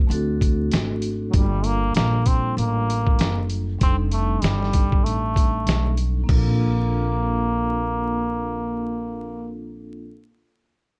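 Mellow soft-mallet vibraphone with a slow motor vibrato and woody pizzicato upright bass open this cool, smooth jazz-hop excerpt at 97 BPM in Bb major, joined at once by a gritty, pitched-down, thumpy sampler-style kit with a tape-warm, swung 16th feel that drops out at 6.5 seconds, while a buzzy, breathy metal-muted trombone carries an up-front jazz solo from 1.3 seconds over dark, dry production dusted with vinyl crackle.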